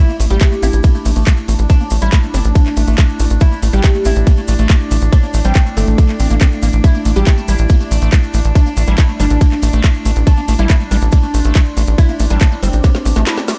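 Hypnotic and psychedelic, this dark psychedelic trance excerpt in A minor at 140 BPM sets a woody, plectrum-plucked fretless oud melody with phaser and digital delay over a punchy sawtooth sequencer bass, an up-front tight electronic kick, and a drum and bass kit of handclaps, metallic hi-hats, ride cymbal and woody snare. A squelchy, resonant liquid acid bass riff with dub echo, a sustained drone with moving overtones, a warbling, lo-fi tape-like pad, and grainy maracas sit in the background, with the oud, acid bass, drone and pad all pumping to the kick before a drum fill at 12.8 seconds.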